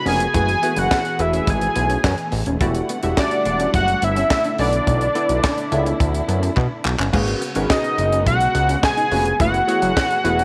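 Early-eighties boogie funk with a danceable, late-night mood, cut from a longer piece, in which a fat, warbling vintage analog lead with chorus and tape echo carries the melody up front over a thick, detuned sawtooth bass, a punchy, filter-plucked polysynth comp, a twangy, slightly broken-up electric guitar riff tucked very quietly beneath, soft bowed strings sustaining chords in the background, and a tight, dry funk kit with bright cymbals, handclaps and a high-tuned snare that plays a fill at 6.6 s, set in light small-room ambience.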